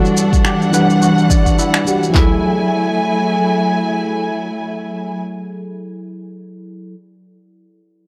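Wistful and smooth, this brief sunset chillout fragment moves at 106 BPM in 4/4 with a 16th-note swing, drifting from Em9 to F#m9 at 2.1 seconds. A round, dark FM electric piano with chorus and tape echo carries the accompaniment through to 6.9 seconds, beside lush, bowed symphonic strings with vibrato held up front, while a ringing fingerpicked concert harp plays filtered, echoing arpeggios in the background. A deep house kit with a deep kick, handclaps and toms sits up front, layered with electronic shaker and finger snaps that stop at 2.1 seconds, all set in a moderate hall reverb on a dry, gritty hardware recording.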